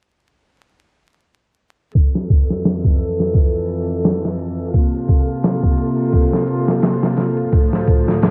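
Heard through a hazy home-cassette sound with vinyl crackle, light reverb and a filter sweep running from 1.9 seconds, this brooding, hypnotic trip hop cut moves with a swung 16th feel over Fmaj7, C7sus4 and Dm. A gritty, pitched-down sampler-style boom bap kit with a thumpy kick, medium-tuned snare and ride cymbal sits up front beside a dark, soft-attack studio string section bowing close, floating sul tasto chords from 2.0 seconds. At 3.8 seconds an airy, breathy wind-like noise texture with its own reverb drifts in far behind them.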